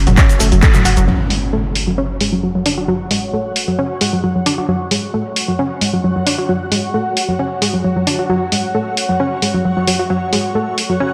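A round, chorused analog pluck riff with tube saturation and analog delay leads this driving, hypnotic peak-time techno excerpt at 133 BPM, opening over a saturated sub bass, a swarming detuned drone and a punchy tape-warm kick that drop out by 1.1 seconds, when an electronic impact hits and a filter sweep begins on the riff, while a layered techno kit of handclaps, hats, shaker and toms, a very quiet dark jazz kit and, from 2.3 seconds, a blurred granular cloud pad fill a dreamy, industrial mix soaked in hall reverb.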